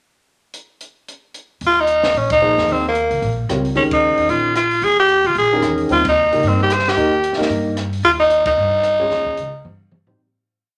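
A compact cocktail drum kit opens alone with a short pickup bar, sticks keeping time on the hi-hat over a punchy kick, a high-tuned snare and dark, dry cymbals, with rim clicks, ride and toms in the mix. At 1.6 seconds the band settles into an open, hypnotic modal jazz groove in Eb mixolydian at a brisk 224 BPM, swung in 4/4, as a woody, thumpy upright bass enters in a pizzicato two-feel on gut strings. Up front, a raspy, growling tenor saxophone carries a motif-based melody built from period phrases, while a grand piano with audible action noise joins at 2.4 seconds with intimate, syncopated comping in quartal voicings. The harmony rests on Eb9sus4 before moving to a rootless Cm, with the whole band striking accents at several points along the way. A moderate studio reverb gives the group a sense of a large room, and the piece fades out from 8.5 seconds as a drum fill closes it.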